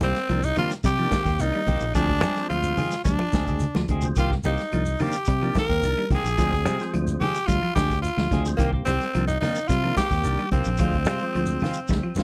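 A straight 4/4 afrobeat groove at 108 BPM in C minor, defiant and hypnotic and cut from a longer piece, rocks between Cm7 and Dm7b5. A punchy vintage drum kit with a rolled-off top drives it, adding fills at 3.1 and 11.9 seconds, over a round fingered electric bass, bright thin-skinned congas, a grainy shekere and very quiet woody claves. Up front, a raspy, growling tenor saxophone carries the melody with vibrato, while a dark semi-hollow guitar plays scooped stabs through harmonic tremolo, and in the background a clean electric guitar picks arpeggios with spring reverb as a lightly overdriven percussive tonewheel organ adds accompaniment through chorus vibrato and a fast rotary speaker, all captured in a dry, close 1970s-style studio sound.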